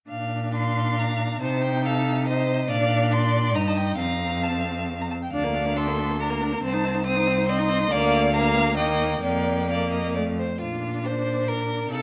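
A focused, rich first violin carries the cheerful melody of this lively classical-period string quartet excerpt in 3/4 with a flexible rubato feel, while a smooth, even second violin enters at 0.5 s up front, a clear viola sits distant in the accompaniment, and an up-front cello anchors the bass, all four bowed with vibrato in a moderate recital-hall reverb.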